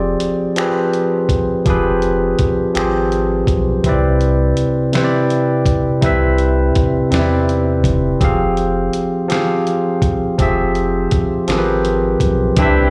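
Slow, tender six-eight R&B at 55 BPM, cut from a longer performance heard live through a club's PA, where a bright, barky tine electric piano with slapback echo sits up front over a deep, round sub bass and a gritty, compressed sampler-style kit of finger snaps, hi-hat, thumpy kick and fat snare, moving from Fm6 to Cmaj9 to Fmadd9 before a mellow, vintage horn section with vibrato and slapback echo lands soft-edged stabs at 12.6 seconds.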